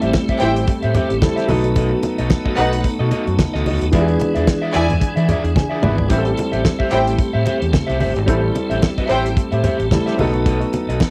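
Disco with a driving, sultry mood, this short cut from a longer piece has a home-recorded cassette character with little reverb. A damped 70s drum kit sits up front with a fat snare, tight kick and rolled-off top, joined by punchy, overdriven fingered electric bass, while low-tuned congas with thick skins sit in the background. A dark, slightly broken-up picked electric guitar and an intimate grand piano, complete with audible action noise and deep bass, fill out the accompaniment. A piping tonewheel organ holds sustained chords through light overdrive, chorus vibrato and a slow rotary speaker, with key click audible. A lush, bowed string section enters at 0.4 seconds as a second line and carries on until 9.3 seconds. The harmony moves from Am7 through B7 and E7 and back, with a piano fill at 5.3 seconds followed by a drum fill at 5.6 seconds, both leading into the return to Am7 at 6.1 seconds.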